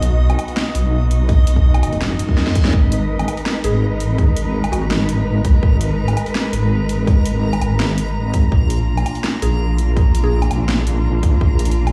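Half-time drum and bass at 166 BPM in 4/4, this dark, spacious excerpt moves over chords of B, Abm and Bb. A deep, wobbling bass sits up front, its detuned sawtooth and sine tones saturated, compressed and thickened with chorus, while a dark symphonic cello section holds bowed, lush chords with vibrato and portamento, roughened by vintage 12-bit sampler grit and pumping with sidechain compression. Above them a reversed, dreamy texture swells with granular detail and its own reverb, and a drum and bass kit with a cracking snare, bright hats and woodblock carries overdrive and the sound of a small room. A hard-clipped electronic kick arrives up front at 1.3 seconds, shortly before a faint reverse cymbal rises from 2.2 seconds and a drum fill lands at 2.4 seconds. A woody, round mallet-like FM pluck surfaces in the background at 3.6 seconds and again later, mellow and decaying through lush chorus and tape echo. 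The whole mix carries light reverb, blending large studio reverb with small room ambience, as if played on a big sound system in a bare room.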